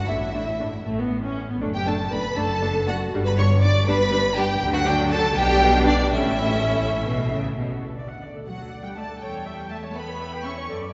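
Two bowed violin sections open together at 0.0 s, one carrying a focused, distant melody high in the range and the other a close, expressive second line, while a portamento-tinged viola section, lush smooth cellos and even, rich double basses fill out this graceful, lively classical-period string orchestra movement in D major and 6/8 at 79 BPM with a rubato feel. It is all cut from a longer piece and bathed in a church's long, wet reverb, with a recording that holds nothing above 7.7 kHz, as the harmony moves from A through G and D toward a closing A7/E.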